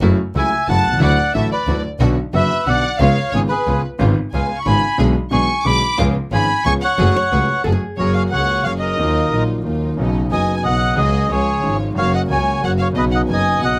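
In a rubato three-four lilt, this elegant, nostalgic tango excerpt sets a reedy, dark bandoneon melody up front over a clear grand piano with deep bass, a bowed double bass with an earthy, biting edge and light vibrato, and lush symphonic string stabs in the background, while a soft sul tasto violin section floats a pure second line and a clean, hollow-body electric archtop guitar slips in briefly from 7.2 to 8.0 s, just before the second section begins.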